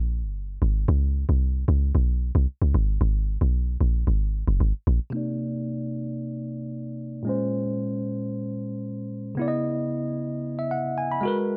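Set in a straight 4/4 groove, this short amapiano cut from a longer piece carries a soulful, late-night mood. It opens on a drop, with a deep log drum bass playing alone from 0.0 seconds: round, percussive and dark, its fast attack decaying over a layer of noise, and sitting up front in the mix. At 5.1 seconds the bass gives way to a bell-like tine electric piano, bright, clean and direct, which carries the second section through a filter sweep until 11.6 seconds. The harmony moves from suspended and open sounds in the first half to lush minor ninth chords, Cm9, Bbm9 and Dbm9, in the piano. The sound is dry and close, with little reverb, and the whole piece is tuned slightly low, to A4 = 435 Hz.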